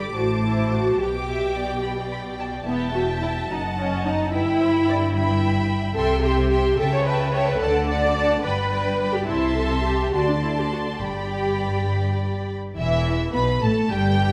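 A string orchestra fills a moderate scoring-stage reverb, with a distant, smooth first violin section carrying the melody above a focused, lush second violin line and a warm viola section that sits up front in the accompaniment. Rich cellos and a dark, woody double bass section anchor the bass in this quick, cheerful and graceful classical-period movement in G major and 6/8, played with rubato at 72 dotted-quarter beats per minute. Cut from a longer piece, the fragment moves through chords such as G/B, Em, C and D before turning to E minor as a new section begins at 12.8 seconds.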